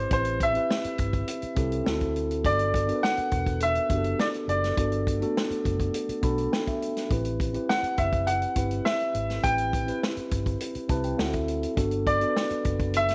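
Bittersweet and cinematic, this short excerpt of lush 1970s-style soul moves at 103 BPM in a straight 4/4, set in A dorian and tuned slightly sharp to A4 = 444 Hz. A clear, intimate baby grand piano carries the melody in a narrow upper range, sitting up front with its action noise faintly audible. Beneath it, a mellow tine electric piano heard through its built-in speakers supplies clean accompaniment, stepping forward with short fills at 5.9 and 10.6 seconds. A vintage muted fingered electric bass adds a dark, round, punchy low end, while a vintage acoustic drum kit with a tight kick, medium-tuned snare and hi-hat enters at 0.1 seconds, its top rolled off for a warm, natural studio-room feel. The harmony cycles through Am7, D7 and Gmaj7, and light reverb with studio ambience wraps the whole ensemble.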